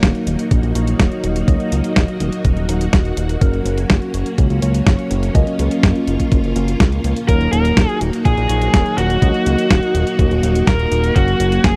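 A dry, close recording with a 1970s studio feel opens this short, danceable italo disco cut, bittersweet in mood and moving in a straight four. A lush string machine holds sustained chords throughout, its sawtooth ensemble given body by a sub octave, a slow attack, long release and ensemble chorus. Beneath it a fat, detuned analog bass sits up front, while a thumpy, tape-warm electronic kick and a clean 12-bit drum machine carrying hi-hat and a medium-tuned snare drive the groove, both re-recorded in a large room. A tine electric piano adds clean stabs colored by phaser and tape echo, sounding as if heard through built-in speakers. At 7.3 seconds a biting lead guitar enters up front with an overdriven, picked melody roughened by vintage 12-bit sampler grit, as the harmony moves between Ebm and Gb.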